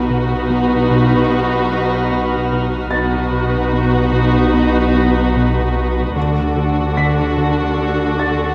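This brief cut from a longer cinematic suspense score opens at once with a hushed bed of muted strings at 74 BPM in a straight 4/4, tense and mysterious in mood. Violins carry a veiled melody with light vibrato over a soft-attacked second violin line, while violas fill in the accompaniment and cellos and double basses hold the dark bass, the basses sitting lush and up front in the mix. A high muted violin texture hovers in the background until 5.7 s, alongside a warm concert grand piano whose deep bass and long sustain add a gentle glow up high. Underneath, a fat, detuned sawtooth analog bass plays a riff with a fast, filter-plucked attack, thick and sustained in the background. The harmony rests on B before moving to D at 6.2 s, and a moderate scoring-stage reverb gives the ensemble a distant, shadowy depth.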